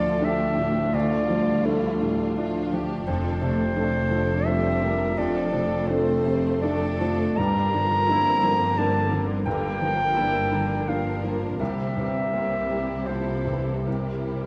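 The full orchestra sounds together from the first moment: a mellow solo clarinet sits up front with a second line, while a rich, expressive violin section carries the melody with vibrato. This cinematic, emotional film cue has a longing, bittersweet mood, moving in a rubato 3/4 at roughly 73-88 BPM over the chords Dm, F6, Gm7 and C7. In the background, a second violin section adds an even, smooth line, and a lush viola section joins a clear, intimate grand piano whose action noise can be heard as it accompanies. A concert harp adds ringing, fingerpicked arpeggios, while a dark, woody cello section and a rich double bass section underpin the harmony, both bowed with vibrato, the cellos sounding distant. The ensemble sits in a moderate scoring-stage reverb with a 1.9-second tail, and this 14.5-second passage is cut from a longer piece.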